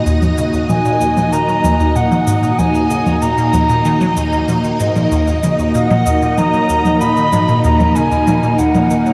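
A dreamy, reverb-soaked mix with cassette tape haze carries this mysterious, cosmic slice of sequencer-driven space music in Eb minor at 95 BPM, where a lush, up-front string machine holds sustained Ebm chords through ensemble chorus, a squelchy, resonant blip pluck runs a low riff through phaser and analog delay, overdriven electronic shaker and toms tap out percussion, and from 0.7 seconds an airy wooden flute sings a high, straight-toned melody.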